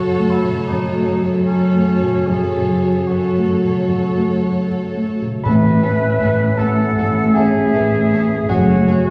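A mellow, distant cor anglais carries a bittersweet, sorrowful melody over a warm, intimate grand piano, lush bowed strings and a close, focused cello section in this brief rubato excerpt of a cinematic, emotional film score. A background double bass section enters at 5.4 s, and at 5.5 s the harmony brightens as a violin section takes the melody, joined by a clear oboe, an airy flute ensemble, a clarinet, a background horn section holding sustained chords and a very quiet, dry touch of timpani. The orchestra sits further back in a wet scoring-stage reverb, with the piano's action noise and a layer of vinyl crackle adding an aged, nostalgic surface.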